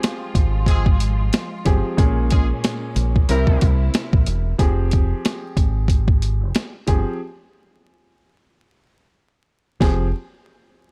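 A swung 92 BPM boom-bap groove in 4/4 drives this dark, moody hip-hop clip in F harmonic minor, with a compressed, pitched-down drum kit up front (thumpy kick, high-tuned snare and hi-hat) and a round, deep fingered electric bass with transformer saturation beneath it. A smooth, vintage grand piano with short sustain and cassette-tape character carries the accompaniment through Fmadd9, Bbm7 and C7, while muted, veiled strings hold lush bowed chords until 4.6 s and a distant, punchy horn section in octaves adds tight vibrato stabs from 0.7 to 3.7 s. The whole sits in a dry, gritty small room with vinyl crackle, and the harmony drops away for a chordless break before the Fmadd9 returns near the cut-off.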